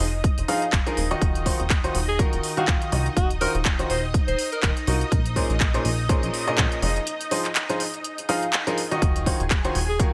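Piano house at 123 BPM in 4/4, with a light 16th-note swing and a soulful, bittersweet mood in Eb dorian, taken from a longer piece. A silky, string-like analog pad holds sustained chords with a slow attack, ensemble chorus and vibrato, while a plucky, funky analog bass with a dark filter pluck and tube saturation sits beneath it, both breathing with sidechain pumping. Crisp, up-front house drums with handclaps and hi-hat open the track, and a punchy electronic kick enters at 0.2 seconds. At 0.5 seconds a brilliant, woody upright piano takes up the riff, pumping with the kick and trailed by tape echo. A smooth-topped alto saxophone with vibrato sings a pop-style solo melody from 2.1 to 4.7 seconds, also carrying tape echo, over chords moving through Fm7, Ebm69 and Bbm9. The mix is dry, with little reverb.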